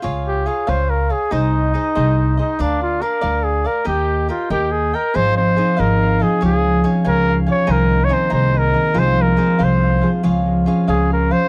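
Picked, crisp cavaquinho and a woody, pizzicato upright bass open this passionate, dramatic mariachi excerpt in Ab major, moving in a straight 6/8 at 94 BPM, with the bass sitting up front. From 0.3 seconds a clear trumpet carries the melody as an up-front classical-style solo with a smooth top, and at 5.2 seconds a fingerpicked concert harp joins with ringing arpeggios. The sound is dry and close, like a 1970s studio recording with light reverb, as the chords move from Db through Ab/C and Fm/C before returning to Db.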